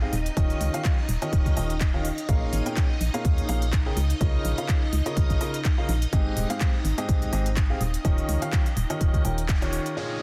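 Piano house at 125 BPM in 4/4 with a light 16th-note swing, energetic and soulful, cut from a longer piece. A woody upright piano with long sustain carries the riff across the whole clip, treated with sidechain pumping and dub echo, while a vintage string machine voicing violins lays shimmering, softly attacked sustained chords behind it with ensemble chorus and the same pumping. Underneath, a hollow, organ-like FM bass with a fast attack and dark decay holds the low end, and a house kit of handclaps and crisp hi-hats comes in at 0.1 seconds, its hats and snare low-pass filtered, joined by a punchy, up-front electronic kick at 0.4 seconds. The harmony moves through Eb9, Bbm7, Db69 and Abmaj7 before returning to Eb9, with a band accent at 9.5 seconds and a short electronic downlifter closing things out at 10.0 seconds. The mix sits in a digital ambience with a dense, heavily limited modern master.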